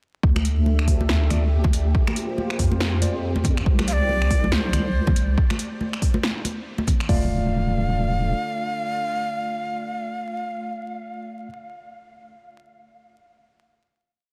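At 0.2 s this dark, heavy deep dubstep piece opens straight into its drop at 140 BPM in D minor, riding a half-time beat with a swung 16th feel. Two overdriven electronic drum kits, re-recorded in a large room, drive it: one up front with a deep kick, floor tom and open hat, the other adding a punchy snare, finger snaps and metallic hats, while close, dry congas struck with hard hands ring through dub echo. Underneath, a deep, soft wobble bass of triangle and sine tones rolls out compressed, chorused phrases with changing wobble speed, and a detuned sawtooth analog pad with a sub octave holds moody chords in the background, joined by a grainy, flickering granular texture on one held high note and a clean tine electric piano through a combo amp placing sparse stabs with medium tremolo and dub echo. At 3.9 s a breathy, bright shakuhachi steps up front with reedy, end-blown call phrases marked by vibrato and chiff. 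The drums fall away by 7.2 s, the bass soon follows, and a final D minor chord lingers on pad, electric piano and shakuhachi. The mix is dense and heavily limited, with little reverb and a layer of vinyl crackle.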